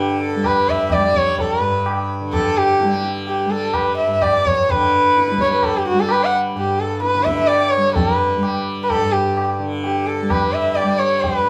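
A wet studio reverb and the sound of a band playing together in one room surround this serene, meditative Hindustani classical excerpt in raga Yaman on G at 128 BPM in 7/4, where an up-front, nasal sarangi with sympathetic strings, light vibrato and gliding portamento carries the bowed melody over a buzzing, shimmering tanpura drone, joined at 0.4 seconds by a distant, low-tuned, ringing tabla.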